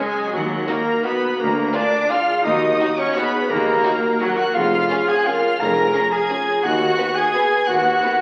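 A festive, sweeping classical fragment in 3/4 at 172 BPM opens with a rich, vibrato-laden violin section carrying the melody over a dense weave: a second violin line, a dark clarinet, an airy flute ensemble, a cor anglais and a bowed viola section, all set in the background beneath close-miked, mellow French horn chords. At 0.3 seconds a clear cello section, tuba and double bass section add a low foundation as the harmony moves through D#m, A#7/D, C#/E# and B/D#, with the uneven, rubato beats giving the triple-metre pulse an elastic feel. The whole ensemble sits in a wet recital hall and carries the crackle of a very old 78 rpm record, lending an antique haze to the lush orchestration.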